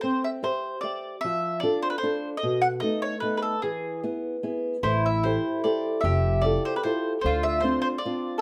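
A lilting, swung three-beat sway carries this wistful, passionate Italian serenade, a short passage cut from a longer folk piece, as a mellow, round picked mandolin sings the melody up front over a bright, fingerpicked flamenco guitar accompaniment with audible finger squeak. At 4.8 s a second, woody mandolin adds a low supporting line, and an upright bass enters with growly, thumpy pizzicato until 7.8 s, all set in a moderate studio reverb. The chords shift from major toward minor sevenths, deepening the yearning tone.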